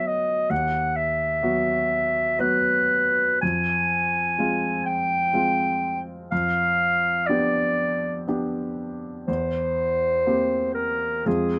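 A warm, roomy clarinet sings an elegiac, solemn melody over clear grand piano accompaniment in this brief romantic classical passage, unfolding in an unhurried triple metre with free, rubato phrasing, the harmony settling onto F minor at 3.4 s before moving on, all caught by close, detailed microphones in light reverb with the clarinet sitting slightly above the piano.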